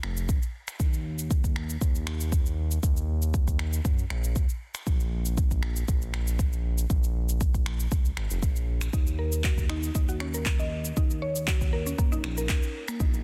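Driving and hypnotic, this afro house excerpt moves at 118 BPM in Eb minor with a light 16th-note swing, built on a deep, up-front electronic kick, layered finger snaps, shaker and handclaps with soft clipping on the snare, and a smooth, gliding sawtooth-and-square synth bass pumping under sidechain, until a woody, round FM mallet pluck enters at 8.9 seconds with chorus, tape echo and its own pumping as the harmony settles on Ebm, all inside digital ambience and a dense, heavily limited modern master.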